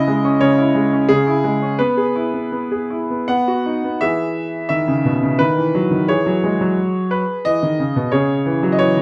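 A bright grand piano plays alone from the first moment, opening on C#m and moving through E/B to B before a second phrase begins at 4.0 seconds and settles on E by 6.1 seconds. This graceful, playful classical-period sonatina passage, lifted from a longer piece, sways in 3/4 with a rubato feel across a range from B2 to F#5. The piano sounds brilliant and smooth with a vintage character and long sustain, placed up front by close, detailed microphones in a light reverb.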